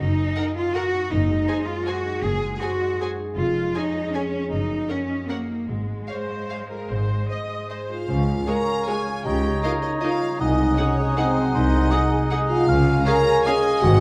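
A concert harp rings out arpeggios over rich, bowed cello and double bass sections at the start of this festive, elegant orchestral ballroom waltz in 3/4, cut from a longer piece. The tempo flexes with rubato between 140 and 173 BPM in Db major. Violin and viola sections join almost at once. A soft-attack violin melody with portamento sits in the background, while a second violin line and a smooth-topped viola accompaniment add focused vibrato. At 8.1 seconds the woodwinds arrive as the harmony settles on Db: a hollow, pure flute section, a solo clarinet and a punchy, distant bassoon, joined at 8.5 seconds by a close-miked oboe with light vibrato, all over a dark, tight, roomy French horn section holding sustained chords. A round timpani note on soft mallets lands at 13.8 seconds, just before the cut, and the whole piece sits in a wet recital hall reverb with a warm production.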